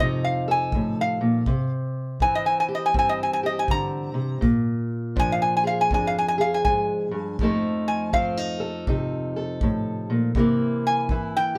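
A metallic, nasal resonator guitar, played with a steel bar and fingerpicks, carries the melody up front in this rollicking, swaggering acoustic country blues excerpt, taking a solo across the full 11.6 seconds. Beneath it, a dark, boxy parlour-style steel-string guitar fingerpicks the accompaniment through F7, C7 and Bb7 in F mixolydian at a swung 81 BPM in 4/4. A tight kick drum played with brushes joins at 0.7 seconds, and the band sounds live in one room with light reverb.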